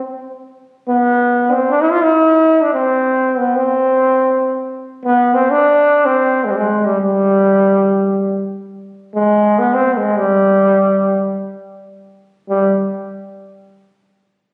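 A bright trombone carries this short passage alone, playing in a classical style with light vibrato as it moves through G makam hicaz in free time, drawn from a Turkish makam ensemble setting. The mood is warm and passionate, the unmetered phrasing giving the line room to breathe. The trombone enters at 0.9 seconds and sounds until 12.8 seconds, staying between G3 and F4. Though placed up front, its tone also comes across as distant and roomy, framed by a moderate scoring-stage reverb with a 1.6-second decay. The recording was captured on a phone in the room and carries a studio reverb, and the music shifts into a brief new section at 12.5 seconds before the cut at 14.5 seconds.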